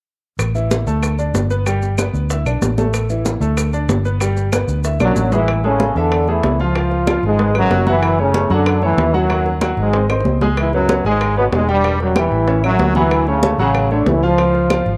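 A brisk, straight 4/4 salsa groove at 189 BPM drives this festive, danceable clip in A major, cut from a longer piece. Ringing, high-tuned congas lead the hand percussion, with tight, band-limited bongos and woody claves set further back, while grainy, mellow maracas sit close and dry until they stop at 5.5 s. A dark, round, foam-muted electric bass holds the low end up front, and a clear grand piano with short sustain supplies the accompaniment, moving from open A5 and D5 shapes into richer chords such as Amaj7, C#7 and F#m7. At 5.0 s, just as a short drum fill marks the change to the second section, a bright, tight trombone section takes the melody up front with light vibrato, a smooth top and a touch of tape echo. A moderate spring reverb and small room ambience give the whole performance a lively, vintage-tinged sense of space.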